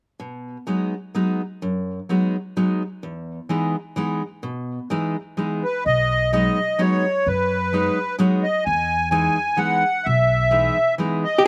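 Charming and nostalgic, this musette waltz in B major moves at 128 BPM in 3/4, opening with a boxy picked steel-string acoustic guitar moving between B6 and Emaj7. At 5.6 seconds a reedy, sweet accordion with light tremolo tuning and a slapback echo takes the melody up front, joined moments later by a woody pizzicato upright bass. A clean hollow-body archtop guitar sounds a single G4 at 11.4 seconds as this fragment of a longer piece is cut off, all heard dry and outdoors, free of any room sound.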